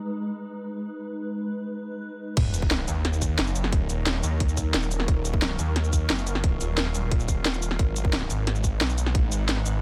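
Dark technical drum and bass at 177 BPM in Eb minor, this futuristic, aggressive piece opens with a swarming, tense drone of wave-folded, granular chords under a filter sweep, then drops at 2.4 seconds into a growling, detuned sawtooth bass thick with distortion and overdrive, a tight electronic kick, and a produced kit of cracking snare, hi-hat, shaker and crash cymbal, with a background sub drop ending at 3.7 seconds, while the bass and drums sit up front and sidechain pumping moves the reverb-soaked drone beneath them.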